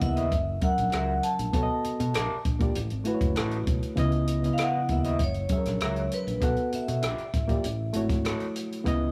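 Lush 1970s-style soul in a bittersweet, smooth mood, this short cut from a longer piece moves at an unhurried straight pulse in 4/4. A vibraphone played with hard mallets carries the melody with a metallic, ringing tone and a slow motor vibrato, sounding boxy in its small room before it drops out at 7.9 seconds. Underneath, a reedy, worn electric piano, slightly out of tune and heard through its built-in speakers, sits up front with the accompaniment, while a fingered electric bass adds a dark, round, direct low end. A compact cocktail drum kit keeps the time dry and natural with hi-hat, rim click and a punchy kick. From 0.2 seconds, an electric guitar through a small old amp plays a picked riff with a warm, slightly broken-up, lo-fi edge, sitting lower in the mix, as the harmony drifts from F#7 through C#m9 and back, all in an intimate room with little reverb.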